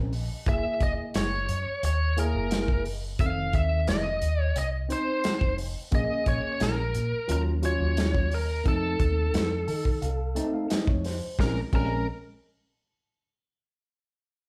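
Recorded as a band playing live in one room, this short cut from a longer piece sits in a moderate large studio reverb, giving it a close, lived-in feel. It is a mournful, soulful straight-eighth soul blues in Bb minor at 88 BPM in 4/4, moving through Gb7, F7, Bbm7 and Ebm7 before settling back on Bbm7. A crunchy breakbeat drum kit sits up front, gritty and saturated with dark cymbals, a medium-tuned snare and a tight kick under a rolled-off top, while a vintage muted fingered electric bass adds a round, punchy, foam-muted low end. A worn, slightly out-of-tune tine electric piano, lightly overdriven through its built-in speakers, carries the accompaniment and steps forward with a fill from 9.3 to 11.4 seconds. Over it all, a biting lead guitar, picked and overdriven with slapback echo, sings the melody from 0.5 seconds onward, its warm tone placed up front in the mix.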